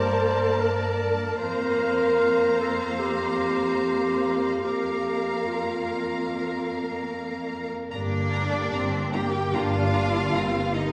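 A lone cello, up front with expressive vibrato and gliding portamento, takes the melody at 7.9 s in this sorrowful, bittersweet cinematic film score at a rubato 74 BPM, after a mellow solo clarinet line has floated until 7.1 s over distant bowed sections of violins, violas and lush cellos moving from Gmadd9 to Fsus4, with a present French horn section, a focused double bass section and a faint high violin line joining the cello on a closing Gm in a reverberant recital-hall space.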